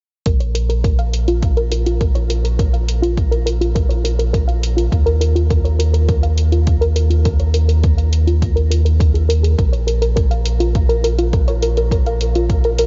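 From 0.3 seconds this intimate, hypnotic electronica excerpt in B-flat minor at 103 BPM sets a soft, round, chorused pluck playing dark arpeggios through diffuse ambient delay and shimmer reverb over a mellow, up-front sine sub bass with tube saturation, both pumping to the sidechain, while a tape-warm layered electronic kick and a quieter overdriven electronic hi-hat drive a straight 4/4 pulse over Bb5, Eb5 and back to Bb5 chords, all in a light, digital ambience with a muted top end.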